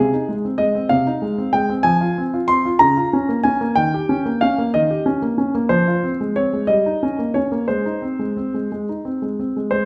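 A 6/8 pulse moves at 58-64 dotted-quarter beats per minute with supple rubato in this cheerful, playful classical-period piano sonatina excerpt in A-flat major. A solo concert grand, warm and natural with a deep bass and placed up front, spans C3 to C6 and carries the music from 0.0 to 9.9 seconds. It moves through chords built on F minor and E-flat seventh before settling home on A-flat, all set in a lush recital-hall reverb.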